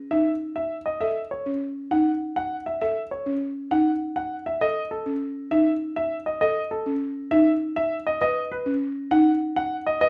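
A moderate large-studio reverb lends space to this short fragment of a longer piece, while both instruments stay up front. It is urgent, hypnotic minimalist classical pattern music at 100 BPM in 3/4, in F# dorian: a buzzing, woody marimba with soft mallets spins dark, round, mellow arpeggios, and an intimate, natural-sounding concert grand piano, its action noise audible and its bass deep, carries the melody, both playing throughout. The harmony settles on F# minor and moves to B at 8.2 seconds.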